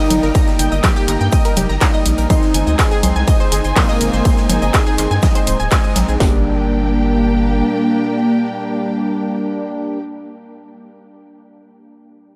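A straight 4/4 pulse at 123 BPM drives this hypnotic, propulsive melodic techno cut in G phrygian, built on a distorted, up-front techno kick and cracking snare with hi-hats, and a second overdriven electronic kit adding congas, handclaps, ride and shaker that pump against the sidechain, all underpinned by a faint, natural big-room acoustic kit. A round, deep analog bass with a fast attack and dark, wave-folded tone holds the low end, while a thick, detuned unison lead carries a mellow melody with vibrato. Brassy, fat analog synth stabs with chorus and delay punctuate the groove, a bright, decaying analog pluck spins arpeggios through cassette-tape colour and echo, and a lush, bowed symphonic string section sustains chords beneath, every melodic layer breathing with sidechain pumping. The harmony moves from a rootless Cm/G to Ab/G, and after a band accent at 5.7 seconds the drums fall away at around 6.2 seconds as the music settles onto Gm. 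The bass drops out at 7.6 seconds, leaving lead, brass and strings suspended in light, small-room reverb to close this fragment of a longer piece.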